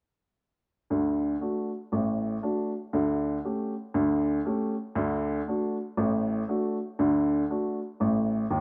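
Set in light reverb, this exuberant, swinging stride jazz fragment features a woody, polished upright piano placed up front, playing solo from 0.9 to 8.6 seconds as its harmony moves from D to A7/D and back to D.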